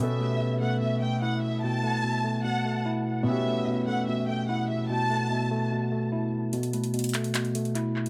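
A dry, echo-heavy mix frames this brooding, melancholic trap excerpt, cut from a longer hip hop piece, set at 147 BPM in a half-time 4/4 feel and tuned slightly low to A4 = 439 Hz. Up front, a worn, slightly out-of-tune tine electric piano carries the arpeggios over an A/B harmony, its notes trailing into analog delay. A dark symphonic violin section floats a lush second line high above, with expressive vibrato, soft bowed attacks and portamento slides, also treated with analog delay, before falling away at 5.7 s. Beneath the violins, a mellow grand piano adds intimate accompaniment, its action noise audible in the close, natural sound. The electronic trap kit flickers only briefly at the start, then returns at 6.5 s with handclaps and metallic hi-hats while the kick stays muted, as the harmony moves to A5/B. The grand piano drops out moments later, and the electric piano rings on with the drums to the close.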